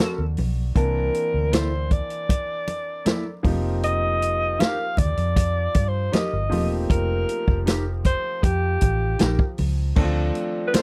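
A breathy, vibrato-laden alto saxophone sings a smooth subtone melody up front over lush 1970s-style soul, joined by a clear, intimate grand piano, a mellow electric guitar riff bathed in lush chorus, a punchy vintage drum kit with dark cymbals, ringing congas in the background, and a round, foam-muted fingered bass entering at 0.2 seconds, all captured in a dry, close studio sound with a cinematic feel.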